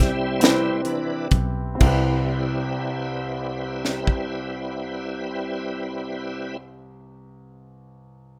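Rolling in a slow, straight 6/8 that is slowing down through the opening 1.8 seconds, this brief, hopeful slice of gospel is cut from a longer piece and carries a soulful glow over a single Cmaj7 chord. A bright, shouting tonewheel organ takes a solo at the start and holds sustained chords up front, its clean, full tone colored by a slow rotary speaker, chorus vibrato and plate reverb until it stops at 6.6 seconds. A grand piano with a natural, up-front sound supplies accompaniment across the low and middle registers and is the last voice heard, ringing until 8.4 seconds. Underneath, a fingered electric bass with a dark, round, foam-muted tone sits in the low range, and a crisp, polished acoustic drum kit with a high-tuned snare, punchy kick, hi-hat and crash cymbal stands out as the loudest part before dropping away at 4.3 seconds. The whole has the light reverb and rough feel of a home demo mix, with the drums carrying an airy studio-room character.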